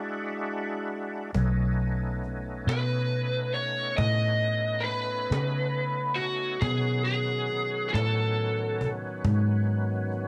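This slow blues in 12/8 moves at 46 BPM with a straight feel, carrying a swaggering, soulful mood in this short cut from a longer piece. A gritty, overdriven tonewheel organ opens alone with thick sustained chords, colored by chorus vibrato and a slow rotary speaker, moving from E9 to B9. At 1.3 seconds a dark, round, foam-muted electric bass enters up front with a punchy tone, alongside a woody cajon struck with hard hands, its faint snares giving a band-limited, vintage character. A lead guitar through a small cranked amp takes the melody from 2.7 seconds, its picked, overdriven voice sitting forward in the mix. Light reverb frames the band in a modest space.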